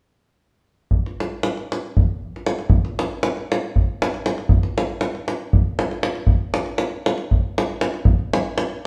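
A deep, acoustic davul opens at 0.9 seconds and carries this brief Balkan folk excerpt in free time, its fiery yet bittersweet character driving the moment until it stops at 8.7 seconds. The drum sits up front with a small-room closeness, while a moderate studio reverb gives the live, one-room performance a sense of space.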